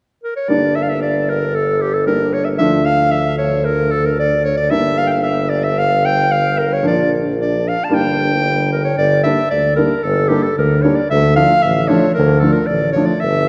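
A bright, classically styled clarinet opens at 0.2 s and carries the melody up front, giving this soulful, festive klezmer passage in a straight 2/4 its voice. From 0.5 s a woody upright piano supplies accompaniment, and a roomy tuba with vibrato holds the bass, also placed up front, while the phrase repeats over Gm, Dm and Bb harmonies. Lush concert-hall reverberation surrounds the parts in this short section cut from a longer piece, with the clarinet and tuba sounding to the end at 13.5 s.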